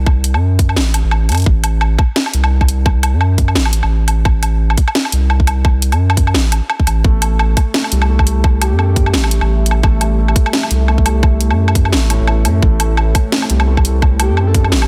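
A half-time drum and bass groove at 172 BPM, swung on the sixteenths in A dorian, rides on a tight, overdriven electronic kick and a layered kit of cracking snare, bright hats and woodblock, with a thick, saturated sine sub bass sitting up front from the start. At 7.0 seconds a felt-muted upright piano adds soft, intimate arpeggios with audible action noise and dub echo, and by 8.7 seconds a deep, moody sawtooth pad with chorus and sidechain pumping settles into the background. A breathy, flute-like synth lead with vibrato appears only in brief phrases, giving this dark, spacious excerpt from a longer piece a dense, heavily limited modern finish with little reverb.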